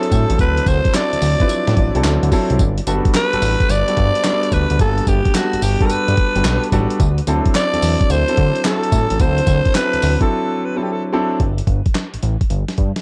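A swung sixteenth-note new jack swing groove drives this bouncy, flirty R&B excerpt. It is built on a gritty, compressed sampler-style drum kit with a thumpy kick, medium-tuned snare, hi-hat, tambourine and handclaps, under a fat, saturated analog bass with a nasal, detuned sawtooth bite. A close-miked alto saxophone carries the melody with breathy, raspy growls, scooped notes, vibrato and tape echo, while a polished grand piano plays over D9 and Gmaj9 chords and a distant, hollow group handclap sits very quietly in a large room; after a break at 10.3 seconds the saxophone stops at 11.0 seconds and the harmony settles on Gsus2, within a dark, lightly reverberant small-room production.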